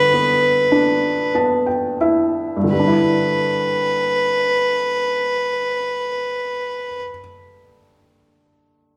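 A single bowed fiddle sits up front with a biting, earthy, boxy tone, singing the melody of this tender, wistful Celtic slow air cut from a longer piece. It moves freely in rubato at roughly 27-36 BPM in 6/8, in G major, and the pace slows through the opening phrase. Beneath it, a felt-muted upright piano, also close and present, provides soft, mellow accompaniment with a short sustain and an intimate, thin-felt character, spanning G2 to A5 and moving over a G6 chord. The piano adds a fill from 0.7 to 2.7 seconds before the tune moves into a second phrase. After the fiddle stops at 7.0 seconds, the piano carries on alone until 9.0 seconds. A recital-hall reverb with a 1.4-second decay gives the church or concert-hall recording a resonant, spacious glow.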